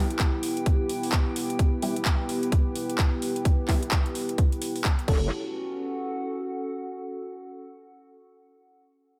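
A tight, up-front electronic kick anchors this bouncy, swaggering bass house clip alongside a garage kit of metallic hats, handclaps and crash, while a moody, detuned analog pad, a punchy orchestra-hit-like stab with digital delay set in the background, and a nostalgic, lo-fi tape-like pad pump together to the sidechain, before an aggressive, saturated wobble bass bursts in at 5.1 s and the warbling tape-like pad rings on alone until 7.1 s.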